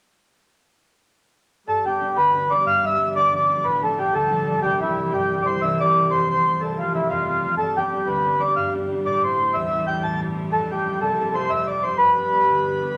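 Lively and bright, this Celtic folk fragment in 9/8 at 122 BPM and G mixolydian, tuned to A4 = 435 Hz, puts a reedy, full accordion up front carrying the melody from 1.7 s, over fingerpicked, ringing concert harp accompaniment and a lush, bowed string section holding a smooth vibrato drone in the background, all set in a large studio reverb as the chords move from G through Dm, C, F, Am and back to G.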